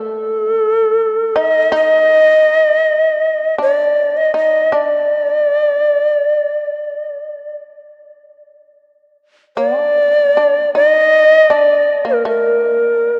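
Japanese traditional chamber music, calm and austere, unfolds in a free, rubato 4/4 across this short excerpt cut from a longer piece. A breathy, bright shakuhachi carries the melody from start to finish, its bamboo tone reedy and close-miked with soft attacks and a gentle vibrato, sitting up front in the mix. Beneath it, a shamisen plays a second line throughout at a much lower level, its plectrum-plucked, fretless strings giving a percussive, buzzing edge. The piece moves from its opening section into a new one at 8.4 seconds, running to 13.2 seconds. A cathedral reverb with a long 4.4-second tail surrounds the pair, while the sound of worn cassette tape adds a warbling pitch drift that makes the recording feel aged and distant.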